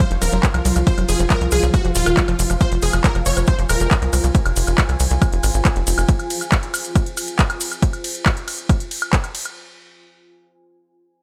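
A straight 4/4 pulse at 138 BPM in F minor drives this hypnotic psychedelic trance excerpt, built on a punchy, tape-warm electronic kick and a techno drum kit of handclaps, smooth hats, ride cymbal and woodblock, with grainy maracas tucked behind and a tight sawtooth sequencer bass up front, while a bright, detuned supersaw stab with phaser and dub echo and a woody wave-folded pluck riff both stop at 4.3 seconds, a pulsing gated texture and a deep, moody ambient pad hover in the background with chorus and sidechain pumping, and a nasal vowel-sweep wobble bass surfaces very quietly at 3.3 seconds.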